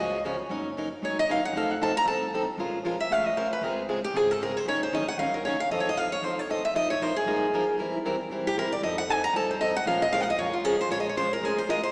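A picked steel-string acoustic guitar solos up front from the first moment, alongside a plugged-in steel-string acoustic guitar playing accompaniment and a woody pizzicato upright bass sitting in the background, in this swinging, bittersweet stretch of jazz manouche cut from a longer piece. Both guitars sound bright, with audible finger squeaks, while the lead line moves through changes such as Gbmaj7, F7 and Bbm7. A wet concert-hall reverb surrounds the trio, though the overall sound has a small-speaker character, and the guitars stop at around 11.9 seconds.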